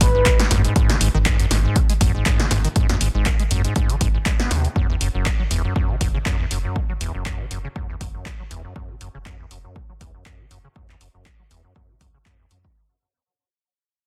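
A squelchy, hollow square-wave acid bass sits up front, playing a resonant, fast-attack, decaying riff with tape echo and a filter sweep running through the whole 12.8-second fragment. This raw, driving acid house cut moves at 120 BPM in 4/4, with a 55% swing on the sixteenths and tuning set to A4 = 439 Hz. Beneath it, a round, deep, dark analog bass blends sawtooth, sine and triangle tones, sustaining under its own filter sweep while both basses pump against the sidechain. A punchy electronic kick drives from the front, joined by an analog drum machine whose snare, handclaps and hi-hat carry a short room sound, both drum parts tape-warm and re-recorded in a small space. The harmony shifts from G#5 to F#5 at 4.8 seconds, all set in digital ambience with a dense, heavily limited modern master, and the piece fades out across its whole length.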